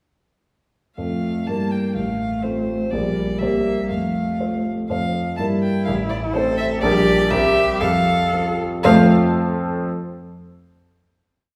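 In a straight 2/4 pulse, this quick, graceful and cheerful classical-period movement for piano trio sets a clear, smooth violin melody with light vibrato over a rich, expressive cello counter-melody with vibrato, portamento and soft attacks, while the warm, deep-bassed concert grand plays bass and chords on the beats. The phrase is stated twice before the strings stop at 9.1 seconds and the piano holds the final chord to 9.9 seconds, with the recording heard from further back in a wet recital hall.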